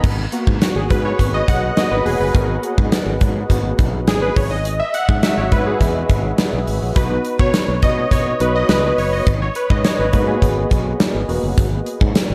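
Detuned, round sawtooth analog keys with chorus and a filter sweep take the solo spotlight up front, moving through G#m7, Emaj7/G#, B and back to G#m7 in this dramatic, nostalgic 1980s-style pop cut at 104 BPM in straight 4/4. A gated acoustic drum kit with bright cymbals, a tight kick, a medium-tuned snare and tambourine drives beneath, while a growly fretless electric bass holds the low end. The whole mix sits in a lush hall reverb that gives it a big arena sound.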